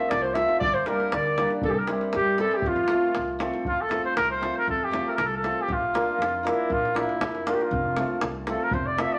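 A wet studio reverb surrounds this cut from a longer Balkan folk piece, played by a wedding band in a straight 2/4 with a wild, virtuosic spirit. A mellow clarinet with a smooth top carries the opening melody in a classical style until 3.4 seconds, while a trumpet plays a second line alongside it. At 3.7 seconds the trumpet takes over for a solo that runs to the close at 9.2 seconds, sounding distant and roomy yet placed up front, with light vibrato and a classical poise. Throughout, a hammered dulcimer supplies shimmering, ringing accompaniment over a woody, thumpy pizzicato upright bass with steel strings, while a tight, close and dry davul provides the percussion. The harmony moves from F through Gm and C back to F, then settles on Bb before returning to F.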